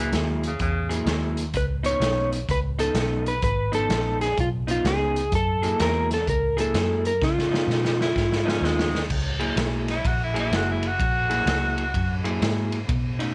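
A gritty, soulful electric blues shuffle cut from a longer piece opens on a bright tenor saxophone, a slightly broken-up electric guitar riff through a small old amp and a round, foam-muted vintage bass over a saturated, up-front garage drum kit with a punchy kick. An up-front electric slide guitar played with fingerpicks then carries the melody from 1.6 to 8.9 seconds, and after a drum fill the forceful, vibrato-laden saxophone takes a solo at 9.1 seconds, set in light small-room reverb.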